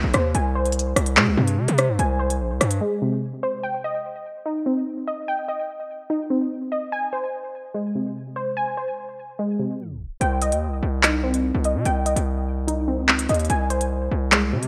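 Dark and cold, this excerpt is drill-style hip hop at 146 BPM in 4/4 with a half-time feel, set in C minor and tuned to A4 = 439 Hz. A warbly, dusty sawtooth pluck plays arpeggios throughout, its detuned, lo-fi tone colored by chorus, delay and a filter sweep, with a fast attack that decays into a mellow tail. A distorted 808-style bass, heavy and saturated with a noise layer over its sine body, joins an overdriven electronic drum kit of crisp hi-hats, handclaps and rim clicks up front at the start. Both drop out at 2.8 seconds, leaving the pluck alone until a tape stop near 9.8 seconds brings them back at 10.2 seconds for the final stretch. The chords move among Ab/C, Cm and Ab, and the mix carries the rough character of a home demo with light reverb.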